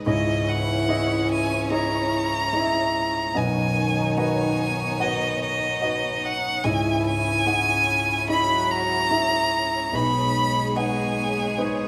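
A clear, smooth solo violin carries the melody up front, its bowed line sung with even vibrato and sitting close in the sound. Beside it, a dark baby grand piano supplies the accompaniment with mellow, long-sustaining playing that reaches from deep in the bass into the upper register. Further back, a lush studio string section holds sustained bowed chords, while a mellow French horn section adds a second line with light vibrato and a smooth top. This emotional, hopeful pop ballad passage moves through C#madd9, Badd9, back to C#madd9 and then G#m/B, all heard as a band playing together in one room bathed in a large, wet studio reverb. Cut from a longer piece, it runs just under 12 seconds.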